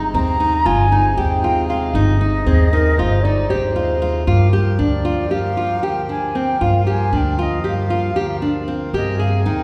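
A woody, thumpy pizzicato upright bass sits up front in this hypnotic, urgent contemporary instrumental in G phrygian, moving in a straight 9/8 at 232 BPM beneath fingerpicked nylon-string guitar arpeggios with audible finger squeak. An airy, distant jazz flute carries the melody with vibrato over the reedy, breathing sustained chords of a hand-pumped harmonium, while a mellow clarinet adds a second line from 2.5 to 4.3 seconds. The harmony shifts from Ab/G to Gm7 and then to Abadd9, and the ensemble is heard from further back in a wet recital hall.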